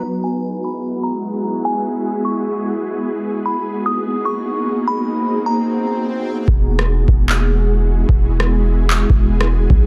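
An ethereal, airy pad of detuned unison sawtooth and triangle tones carries this blissful, dreamy cloud-rap hip hop piece at 149 BPM in a half-time 4/4 feel, its sustained Eadd9 and Bmaj7 chords softened by ensemble chorus, built-in reverb, sidechain pumping and a low-pass filter, while a delicate, tinkling FM bell melody with chorus and digital delay sparkles above until 6.0 s. An electronic swell leads into 6.5 s, where a deep, boomy 808-style bass with a sine body and noise layer enters alongside a booming, overdriven analog drum machine of deep kick, handclaps and rim clicks, both placed up front. The mix sits in light reverb with a dense, heavily limited modern master.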